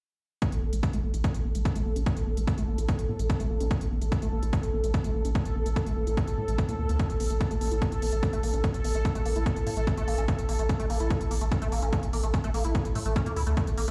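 Psychedelic trance at 146 BPM in A major, this cut from a longer piece feels intense and hypnotic, running as a single section from 0.4 to 13.9 seconds over a steady A chord. A punchy, tape-tinged electronic kick drum sits up front with smooth, layered electronic hi-hats beneath it, both carrying the character of a small room. A round, deep analog bass built from triangle and sine tones holds the low end between A1 and A2, while a squelchy, resonant square-wave acid bass plays a riff from A3 to E4, its filter sweeping throughout and its notes treated with chorus, tape echo and sidechain pumping. Above them, a bubbling sawtooth texture of detuned, randomly stepped filter chords sustains around A4, sidechain-pumped and bathed in chorus and its own reverb. A metallic, wobbling FM bass appears only at 13.9 seconds, saturated and high-passed with ensemble chorus. The whole mix sounds as if played through a big sound system in a bare room, with a large studio reverb.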